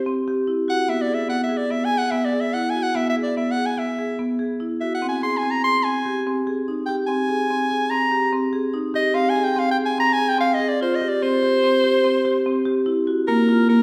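Playful and shimmering, this contemporary instrumental piece moves in an uneven five-beat metre with a straight feel, and it is cut from a longer work. A bright soprano saxophone carries the melody from the opening moment, close-miked and punchy, with a pop-style vibrato that places it squarely up front as the solo voice. Just behind its entrance, at 0.1 seconds, a marimba played with medium hard mallets spins out arpeggios in a dark, smooth tone, also sitting forward in the mix. The harmony travels from C through E, Ab and F minor before settling on open, power-chord colours, C5 at 11.2 seconds and Bb5 at 13.3 seconds. A recital hall reverb lends the whole a wet bloom, as if heard from further back in the room, even while the two instruments stay close.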